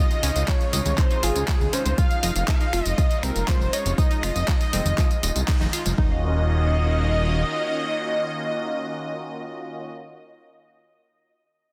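Emotional and expansive, this progressive house excerpt in Eb dorian at 120 BPM opens on a drop: a thick, dark unison sawtooth lead with vibrato carries the melody, joined by a reedy, gut-string studio violin section playing a second line, both trailing dub echo. Beneath them, a slowly swelling, bright supersaw pad moves through Dbmaj7 and Fm7, while chorused analog pluck arpeggios ring in the background. The low end pairs a fat, saturated analog bass with a deep, up-front electronic kick, and a tape-warm deep house kit of finger snaps, handclaps, hi-hat and tambourine plays alongside ringing, dry congas, with sidechain pumping through the bass, chords, melodic lines and percussion. A band accent lands at 5.5 seconds, the kit, kick and congas fall away near 6 seconds, and the bass drops out at 7.4 seconds, leaving lead, strings and pad on Ebm7 under light reverb and a dense, heavily limited master.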